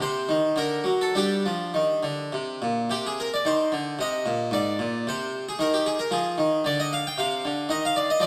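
A solo harpsichord sits up front in a wet recital hall, its long reverb wrapping the plucked, full tone of a Flemish-style instrument with two sets of strings. This short cut from a longer baroque-style suite movement in C minor moves in a flowing, solemn 3/4 at roughly 101-117 BPM with rubato, ranging from Ab2 to G5. Two statements of the opening section pass through chords such as Cm, Gm, Ab and Dm7b5 before settling on Ebmaj7sus2 at 7.7 seconds.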